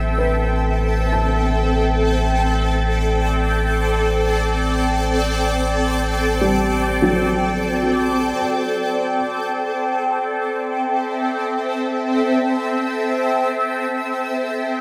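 A bright, shimmering ambient pad with granular, detuned chorus and phaser sits up front, holding sustained chords that open on Am7 in free time over a round, deep sub bass on A1 and a soft, felt-muted upright piano whose intimate arpeggios, with audible action noise and a diffuse delay, drift in the background until 9.2 seconds, all bathed in a concert hall reverb that gives this serene, melancholic ambient fragment in A dorian its ethereal, spacious glow.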